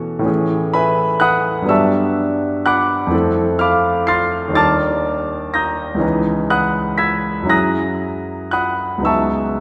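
A concert grand piano opens this brief fragment of a longer impressionist solo piece, its tone clear and intimate, with the mechanical noise of the action audible beneath the notes. The mood is serene and dreamy, moving in 6/8 with a free, rubato pulse that lets each phrase breathe. Over roughly 9.6 seconds the harmony glides through a chain of major-seventh chords, Amaj7, Gmaj7, Fmaj7 and D#maj7, before settling into C#m11 and F#9 and returning to C#m11 near 9.1 seconds. The piano spans from deep bass notes up into the glistening top register, and its polished, present sound carries a long sustain. A lush concert hall reverb surrounds it, with the listener placed further back in the room so the chords bloom into a soft halo.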